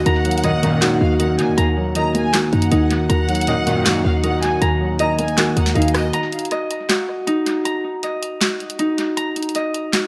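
Trap-style hip hop at 158 BPM in a half-time feel and Eb minor, menacing and eerie, opens on a dark, boxy grand piano with audible action noise, a warm vibrato-laden violin section through analog delay, a very quiet detuned sawtooth pad, a ringing fingerpicked Celtic harp up front with its own delay, a punchy sine 808 bass, and a trap kit of sharp snare, bright hats, rim clicks and handclaps, while fat, nasal synth-brass stabs with chorus sit in the background around 0.4 and 3.5 seconds, before everything but the harp and drums drops out at 6.1 seconds for a break in an echo-heavy, lightly reverberant mix that is cut from a longer piece.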